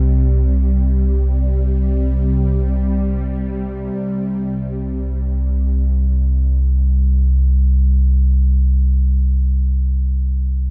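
Free of any pulse, this ambient fragment, cut from a longer piece and tuned to A4 = 438 Hz, drifts with a warm, weightless calm. A deep, round sine sub bass holds C2 up front for the full 10.7 seconds, its fast attack settling into a steady sustain. Beside it, a bowed-like drone built from detuned sawtooth voices in unison, with a noise layer, swells in slowly between C3 and G3, sounding string-like, tense and bright, colored by vibrato, a phaser and its own built-in reverb. The harmony rests on a C5 chord until 3.9 seconds, and the drone stops at 4.0 seconds, its long release trailing off, while the bass then continues alone under an open, chordless stretch. A light reverb gives the recording a gentle sense of space.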